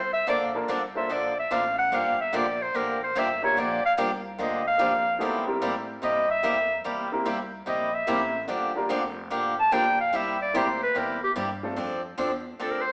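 Swinging at 146 BPM in 4/4, this cheerful, playful western swing excerpt puts a warm, classical-style clarinet solo up front from the start, over a bright, boxy picked acoustic guitar on fresh strings entering at 0.3 seconds, a woody, short-sustained upright piano from 0.5 seconds and a dark, thumpy pizzicato gut-string upright bass, with the band playing live in a stone room with wet 1.3-second reverb and a small-speaker sound as the harmony moves from Bbmaj7 through Gm7 and C7 to F6.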